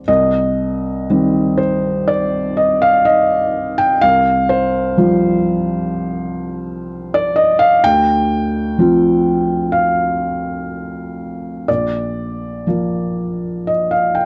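Worn, warbling cassette tape with a drifting pitch and a dry, close sound frames this short neoclassical minimalist fragment, cut from a longer piece, where a solo felt-muted upright piano, mellow and intimate with its thick felt placed up front, plays with a loose, rubato feel through wistful, reflective harmonies that move from Cm to Dm7 at 7.8 seconds and settle on Bb at 11.7 seconds.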